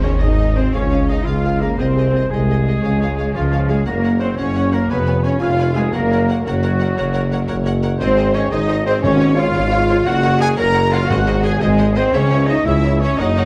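A full orchestra opens this adventurous, soaring cinematic cue in a straight 12/8 feel: rich, lush violins carry the vibrato melody in the background over a second line doubled by a pure, bright flute, a soft-attack oboe and smooth, very quiet upper violins, while rich, smooth violas fill in beneath. Mellow, tight French horns hold sustained chords, a clear, punchy trumpet adds very quiet stabs, and focused cellos join the up-front double basses and a distant, roomy tuba on the bass. Round, soft-mallet timpani strike at the start and return from 9.0 to 11.6 seconds, all set in a dark, reverberant recital hall sound.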